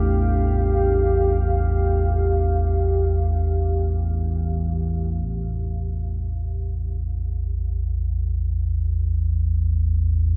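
Ominous and unsettling, this dark ambient drone drifts in free time, cut from a longer piece. A deep, rumbling low drone sits up front for the full 10.4 seconds, its wave-folded tone swelling in slowly and sustaining beneath everything in a haze of its own reverb. Above it, a moody pad holds sustained chords, opening on Dmadd9/A with a sawtooth unison blend, a sub octave and a ring-modulated edge, thickened with chorus. The pad stops at 5.3 seconds, where the harmony settles onto a bare A5 and the drone carries on alone. A huge ambient reverb with an 8.2-second tail wraps the dark, warm production, letting each tone linger long after it fades.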